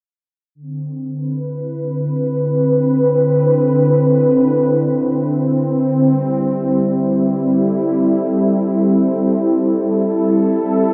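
Ambient music in free time, reflective and spacious, this short fragment is cut from a longer piece and tuned slightly sharp to A4 = 441 Hz. A single analog pad carries it alone from 0.5 s to the close, its detuned sawtooth tone smooth and mellow with a soft attack and long sustained notes between D3 and B4. Chorus and a diffuse ambient delay thicken the pad, which sits up front in the mix. The harmony rests on Cmaj9 before moving to Am7 at 6.1 s. A wet cathedral reverb with a 5.5-second decay places the sound in a vast, echoing space.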